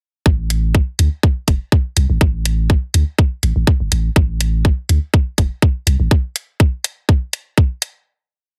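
A four-on-the-floor kick drives this short, whole piece of minimal techno at 123 BPM in straight 4/4, in A minor. The mood is cool and sparse. The tight, overdriven electronic kick sits up front, joined by programmed closed hi-hats and a backbeat that carry a gritty, layered edge of their own. Underneath, a deep, punchy sub bass plays a syncopated riff between E1 and D2, with a sine tone, a pitch-drop attack and sustained notes that pump against the sidechain. The bass drops out at 6.1 seconds, leaving the kick to run until 7.7 seconds and the hats until 7.9 seconds. The sound is dry and heavily compressed, with a close, radio-like punch.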